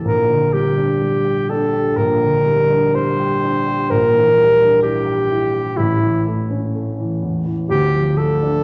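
Elegiac and melancholic, this brief romantic classical extract at 62 BPM in a rubato 4/4 sets a clear, up-front alto saxophone singing a solo melody between E4 and C5 over a dark, mellow grand piano accompaniment, both playing throughout the 8.6 seconds, as the harmony moves from Gm/Bb through Em7b5/Bb and A to Dm within the wet reverb of a recital hall.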